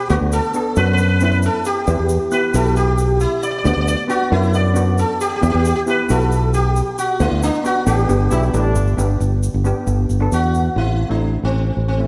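Bouncy and sunny, this calypso excerpt moves at 135 BPM in G major, with a bright, buzzing sitar carrying the melody up front over a metallic steel pan accompaniment played with hard rubber sticks and a growly, punchy fingered electric bass. A grainy egg shaker keeps time until 10.6 s, and a distant, tight horn section with vibrato and octave doubling adds a brief second line between 8.3 and 8.9 s. The harmony circles between Bm/D and Em before settling on G and finally Am, all set in a moderate concert hall reverb, with the pans kept close and dry.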